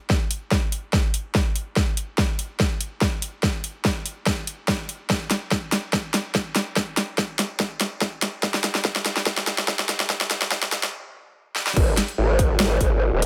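A growling, saturated wobble bass crashes in at the drop at 11.8 seconds, sitting up front with overdrive and chorus and a formant-filtered, aggressive snarl that carries this chaotic, heavy dubstep fragment cut from a longer piece. Before it arrives, a long build-up in a half-time feel is driven by a big-room dance drum kit, with a huge snare, metallic hats and crash cymbal, alongside a punchy electronic kick. A drum fill and a filter sweep run through the build, and the drums halt at 10.9 seconds, leaving a brief stop before the bass lands. Both drum parts sound layered and produced, re-recorded in a small room, with the kit placed up front. The mix carries light reverb and a high-pass filter, and the drop's fast-attack, compressed bass ends the clip with sustained, wobbling growls.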